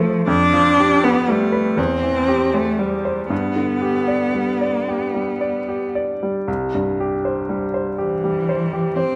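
In a rubato 6/8, this lyrical fragment of a slow romantic classical movement sets a rich, bowed cello, a single player with vibrato carrying the second line, up front beside a bright, brilliant grand piano whose short-sustained accompaniment moves from G7/F through C/E and G to C, all captured close and in detail within a resonant recital hall.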